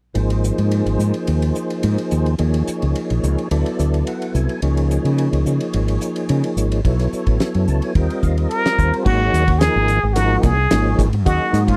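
A straight 4/4 groove at 108 BPM drives this slick, bright slice of electric jazz fusion in Ab major, cut from a longer piece. A damped 70s drum kit, dry with a fat snare and tight kick, works through hi-hat, ride and crash. Beneath it, a round, punchy fretless bass sits up front, direct and amped. A clear tonewheel organ carries the harmony through a slow rotary speaker with chorus vibrato, adding fills from 3.5 to 4.6 seconds and again from 7.4 to 9.1 seconds as the chords move from Ab through Ebsus2, Dadd9, Dbadd9, B5 and Eb. At 8.5 seconds a brilliant trumpet with plunger mute takes the melody up front, its wah-wah tone and vibrato in jazz style, and at 9.1 seconds, as the harmony lands on Ab9sus4, a very quiet, compressed clean electric guitar adds fingered stabs. The close, dry 1970s-style studio sound carries a faint mains hum.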